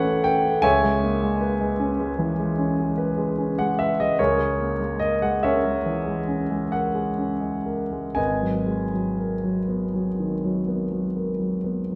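A grand piano plays alone, its tone intimate and natural, with the soft noise of its action audible and notes ringing in long sustain. This 12-second fragment of a longer impressionist classical piece unfolds in 9/8 with free, rubato timing, carrying a nocturnal, wistful mood. The harmony drifts from A9 into C#m7 at 0.6 seconds, shades to C#m6, then settles on G#m9 at 8.2 seconds. The piano spans a broad register, from deep bass notes up into the treble. It sits up front, framed by a recital hall's lingering reverb that gives a sense of the room around it.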